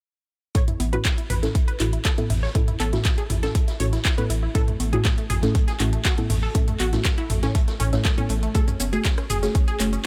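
Dry, this hopeful, uplifting progressive house excerpt sets a punchy, up-front electronic kick under a round analog bass with sidechain pumping, warbling deep chord stabs carrying chorus, tape echo and 12-bit sampler grit, and bright detuned unison pluck arpeggios with phaser and echo, while a house kit of handclaps, metallic hats, rim click and shaker sits over a background vintage kit of hi-hat and mid-forward snare and distant roomy electronic toms and congas, the harmony moving from A to F#madd9 at 8.6 seconds.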